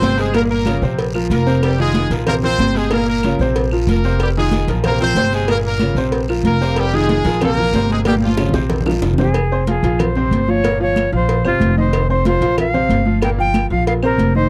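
A punchy, bright horn section with a touch of slapback echo opens this passionate, fiery salsa at 186 BPM, riding over a clear vintage grand piano, a thumpy, dark upright bass played pizzicato up front, and tight cowbell and bongos, along with a bed of ringing congas, woody claves and a raspy guiro in the background. The chords circle between Gm7b5 and Bbsus2 with Fm7, and after a drum fill at 8.1 s the horns give way to an airy, expressive silver concert flute that takes the melody from 9.2 s. The sound is dry and close, like a 1970s studio, and this is a short excerpt cut from a longer piece.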